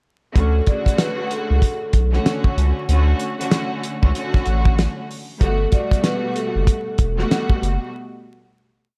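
A lush bowed string section opens at 0.3 s with chopped chords repeated like a sampled loop, joined almost at once by a mellow, ringing vibraphone played with soft mallets, whose short looping melody carries a slapback echo. Beneath them, a deep, round analog bass line and a thuddy, cloth-damped kit with a fat snare and tight kick sit up front in a swung boom-bap beat, moving from Dmaj7 to Gmaj9 under a layer of vinyl crackle and studio reverb. This short, nostalgic and soulful hip-hop piece breaks off into a fade-out at 7.9 s.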